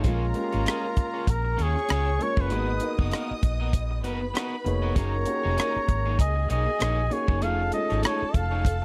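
A dry, close 1970s-style studio sound with a small room reverb frames this bittersweet, smooth soul excerpt, built on a swung sixteenth-note feel and chords moving from A#m7 through G#m9 and F#69 to F7alt. Up front, a clear, close-miked flugelhorn carries the jazz-style melody with scooped notes, while a lush, woody string section bows a vibrato-laden second line and a concert grand piano adds open accompaniment with deep bass. Beneath them, a twangy, slightly broken-up picked electric guitar plays a riff, a dark, round, foam-muted electric bass punches forward, and a tight funk drum kit drives the groove on hi-hat, kick drum and rim click.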